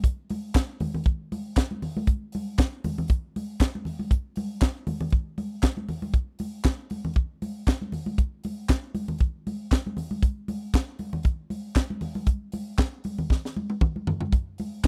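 A funk drum kit and congas start together at the top of this disco excerpt, setting a glamorous, danceable groove at 118 BPM in a straight 4/4. The acoustic kit sits dry and up front, with a high-tuned snare, a tight kick, hi-hat, toms and handclaps. Beneath it, the congas ring bright and high-tuned, their thin skins struck with hard hands and miked close, sitting lower in the mix than the kit. The music moves into a second section around 6.1 seconds, a drum fill arrives at 13.3 seconds, and the congas stop at 14.7 seconds. A small-room ambience gives the whole piece the intimate feel of a 1970s-style studio recording.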